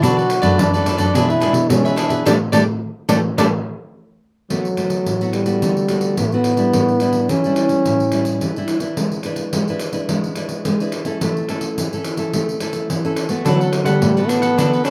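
Samba and choro at 107 BPM in D major, joyful and sunny, cut from a longer piece, carried throughout by a fingerpicked classical nylon-string guitar up front, bright with fresh strings and the odd finger squeak, and a jingly pandeiro played with hard hands, sounding distant in a large room under light reverb. It opens with a warm jazz-style trombone solo with scooped notes, over crisp picked cavaquinho and a soft-attack, floating bowed cello bass played sul tasto, with a band accent from 2.3 seconds before those three parts drop out at 3.5 seconds. At 4.5 seconds a mellow, close-miked trombone takes the melody, prominent with vibrato, and the cavaquinho and cello return for the brief closing passage.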